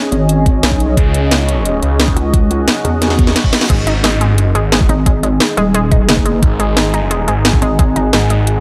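Dark technical drum and bass with a mechanical, tense mood, built from two deep, moody pads holding sustained C#m chords and texture in the background under chorus and pumping, a heavy pulsing pluck wobble bass with tube saturation and a swirling, thick phased saw bass with overdrive up front. A knocking electronic kick and an up-front kit with cracking snare, metallic hats and crash drive the cut. A drum fill from 3.0 seconds, joined by a very quiet reverse cymbal at 3.2 seconds, leads into a nasal, wave-folded analog pluck arpeggio with dub echo entering at 3.7 seconds as the harmony moves to G#5. The sound sits in light digital ambience, the drums carrying a tape-warm, small-room character.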